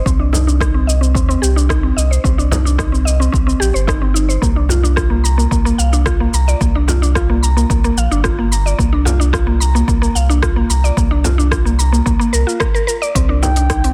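A straight 4/4 pulse at 110 BPM drives this hypnotic organic downtempo excerpt. It rests on a punchy, layered electronic kick and a produced kit of cabasa, crisp hi-hat and rim click, with soft clipping on the snare. A frame drum played with soft hands adds an acoustic, small-room texture alongside them, while a deep, round sine sub bass sits up front with sidechain pumping, moving between G1 and Eb2. Over the top, a woody, full-bodied FM pluck with a mallet-like character spins arpeggios through chorus and digital delay, a filter sweep running across its whole length as the harmony moves from Cmadd9 to Bb and back. At 13.4 s, just as the clip closes, a mellow bamboo bansuri slips in on a pure, vibrato-touched G5, all set in light reverb, tuned to A4 = 436 Hz, with a dense, heavily limited modern master.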